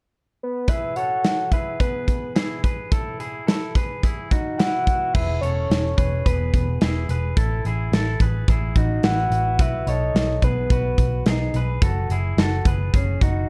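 Dark, warm production with light reverb frames this breezy, youthful cut of jangly indie pop in E major at 108 BPM, where a round, detuned synth lead with chorus and vibrato carries the melody from 0.4 s to 11.5 s over twangy, slightly broken-up electric guitar arpeggios and a punchy, big-room rock drum kit with bright cymbals, joined at 5.1 s by a foam-muted, amped picked bass up front as the chords move from E and Asus2 to B and F#sus4.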